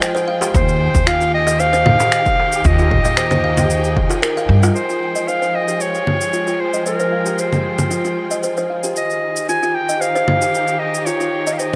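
Organic downtempo with a hypnotic, mystical mood, built on a woody, ringing kalimba arpeggio that gains a filter sweep from 4.8 s, over sustained string-section chords with vibrato and a pumping pulse, electronic finger snaps, shaker and congas, and a bright clarinet melody carried by tape echo. A dark, pizzicato upright bass sits up front beside a punchy electronic kick drum and a crisp darbuka in the background, all three dropping out before 4.8 s. The whole sits in a small room with light reverb, and this cut comes from a longer piece.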